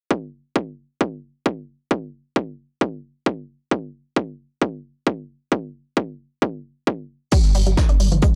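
An overdriven, heavy electronic kick opens this driving peak-time techno excerpt alone, sitting up front in a straight 4/4 pulse from 0.1 seconds. At 7.3 seconds the track opens out, as a bright, squelchy resonant blip pluck plays a short riff from F3 to Eb4, colored by phaser, tape echo and sidechain pumping, while a filter sweep moves over the synth arpeggio. Alongside it, a tape-warm analog drum machine adds pumping, low-pass filtered crash cymbal and hi-hat, and a distant jazz brush kit with a rolled-off top supplies hi-hat and medium-tuned snare far in the background. A dark, detuned sawtooth bass rumbles on a deep G1 from 7.4 seconds, its beating unison also pumping with the sidechain. Small room ambience and a cassette-tape character wrap the intense, relentless mix.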